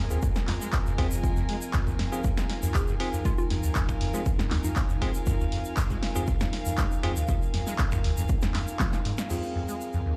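Heard through a big sound system in a bare stone room, this driving, hypnotic acid house piece at 119 BPM in F minor rides a rubbery, saturated acid bass riff with overdrive and ensemble chorus, a dry, punchy, up-front electronic kick, an analog drum machine of snare, hi-hat, handclaps, finger snaps, toms and crash cymbal, a grainy tube shaker, sustained chords from a warbling lo-fi pad with sidechain pumping, a floating string texture that also pumps, bell-like electric piano stabs through tape echo, and a hollow, bouncy square pluck melody that enters at 2.7 seconds, with a drum fill at 8.8 seconds leading to a band accent at 9.2 seconds.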